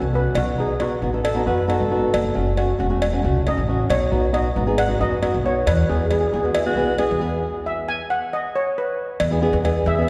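Bouncy and sunny, this fragment of a calypso moves at 136 BPM in a straight 4/4 in E major, with a shimmering steel pan playing the lead with hard rubber sticks over a thumb-plucked flamenco guitar with fresh strings and a woody, thumpy pizzicato upright bass on gut strings, both sitting up front. A close, dry cowbell adds metallic percussion, while a breathy alto saxophone in a whispered, jazz-style subtone with light vibrato adds brief second lines from 1.2 s. The harmony moves through B7, F#m7, Badd9 and Emaj7 before a stop at 7.4 s and a landing on E at 9.2 s, all bathed in a wet, cavernous church reverb.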